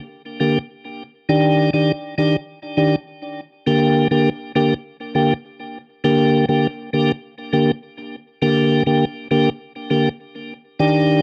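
Dancehall in G minor at 101 BPM, this short cut from a longer piece has a bouncy, hypnotic mood carried by a lone tonewheel organ, which enters at 0.4 seconds and plays alone until 11.2 seconds, ranging from D3 to G4. The organ sits up front with a piping, scooped, clean tone, colored by a slow rotary speaker and digital delay, while the harmony moves from Gm to Ebmaj7 at 1.3 seconds and back to Gm at 3.7 seconds. Light reverb surrounds it, and the whole sound carries the worn, warbling pitch drift of old cassette tape.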